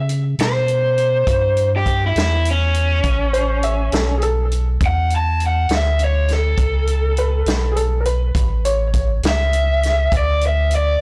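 A blown-out, overdriven recording with light reverb carries this swaggering, rollicking slow blues fragment in 12/8. Up front, a raw garage electric guitar takes the melody from 0.4 seconds, its picked, lo-fi tone pushed through overdrive. Beneath it, a pure sine sub bass sits deep and smooth, with a fast attack and long sustain, its dark, clean tone given a touch of transformer saturation. A vintage acoustic drum kit plays hi-hat, kick and snare in a natural studio room, with a punchy kick, a medium-tuned snare and a rolled-off top. A clear, woody upright piano, worn and slightly detuned with short sustain, adds a second line through digital delay until 9.1 seconds, while the harmony rests on A9 before moving to Dsus2 at 10.1 seconds.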